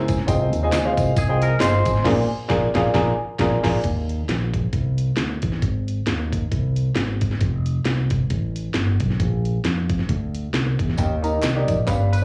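Uplifting and jubilant, this swung uptempo gospel clip, cut from a longer piece and heard live through a club's PA, opens with a woody upright piano fill bathed in plate reverb and slapback echo. A round fingered electric bass and an up-front drum and bass kit with knocking kick, cracking snare and bright hats drive the groove, while close tambourine and handclaps and brief lines from a dark, clean, twangy electric guitar with spring reverb color the opening before a band accent. The piano drops out at 3.8 seconds, leaving bass and drums to carry the second section, and returns at 11.0 seconds alongside the percussion.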